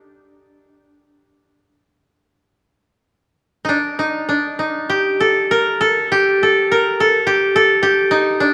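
Japanese traditional chamber music, austere and calm: a solo koto, played with fingerpicks, moves in a loose, rubato 2/4 with uneven beats across this 8.5-second fragment of a longer piece. The instrument sits up front with a dry, woody tone, staying within a compact middle range from D4 to Bb4. A moderate church reverb gives the recording a long, spacious decay.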